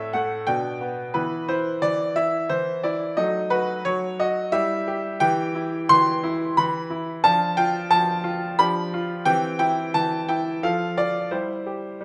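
A bright baby grand piano opens this cheerful, elegant classical-period sonatina, playing solo at 89 BPM in a straight 3/4, with a high note at 1.2 seconds ringing over chords that pass through diminished and minor colours before settling into C major at 5.2 seconds. The brilliant, open tone sits up front and spans A2 to C6, while the harmony moves through Dm/F and G7/F and finishes on C/G. A moderate recital hall reverb gives the notes a natural 1.5-second decay in this short piece cut from a longer work.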